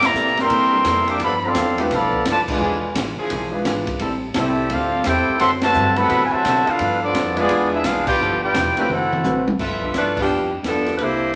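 Big band swing jazz at 172 BPM in G major, joyful and brassy, with a smooth-topped trumpet section carrying the melody up front over a bright trombone second line, close-miked brilliant trombone chords, a dark hollow-body guitar, a woody pizzicato upright bass, a background grand piano and a small-room drum kit with dark cymbals and a boomy kick, all in a large studio reverb, until a drum fill at 8.9 seconds leads to brilliant trumpet stabs at 9.6 seconds and a vibrato-laden saxophone section taking the melody from 10.0 seconds.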